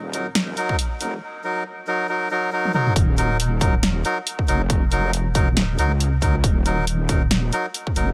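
Deep dubstep with a heavy, dark mood, moving in a half-time feel with a loose swing on the sixteenths. A wobbling sawtooth bass, detuned and saturated with a resonant edge and chorus, sits up front from the opening moment, its fast attack giving way to a sustained, compressed growl. Reedy, nasal melodica stabs with a breathy, plastic-case character ring through dub echo. An overdriven deep house kit of hi-hat, punchy snare and toms, re-recorded in a small room, drives the groove, joined at 0.7 seconds by a punchy, tape-warm electronic kick. The music opens on an Eb minor chord, and after a build-up capped by a drum fill, the drop lands at 3.0 seconds, all in a dry, close sound with little reverb, in this excerpt cut from a longer piece.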